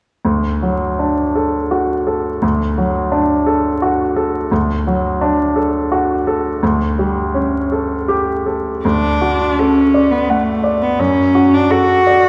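A clear, polished baby grand piano opens at 0.2 s with tender romantic classical accompaniment in D major, moving in a rubato 3/4 around 76-87 BPM, before a rich, expressive bowed cello enters up front at 8.9 s with vibrato and portamento, all set in a wet concert hall reverb with vinyl crackle in this short cut from a longer piece.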